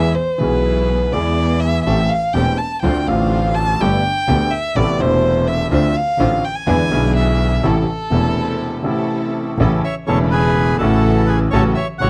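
This nostalgic, playful tango excerpt opens with a warm, expressive violin solo, bowed with vibrato, soft attacks and gliding portamento, over woody upright piano, earthy bowed double bass with light vibrato, and lush string-section stabs set in the background. The piece sits in A minor at 124 BPM in 4/4, but the feel is loose and rubato, with the harmony moving through chords such as Am7, Dm7, Gadd9 and E7. A break arrives at 8.6 seconds, and the violin falls silent at 9.1 seconds. At 9.8 seconds a reedy bandoneon takes over the melody in a passage built on an A major chord, its sound boxy and touched with slapback echo. The dry, close 1970s-style studio sound keeps the piano, bass, violin and bandoneon up front, with a faint layer of vinyl crackle adding to the vintage character.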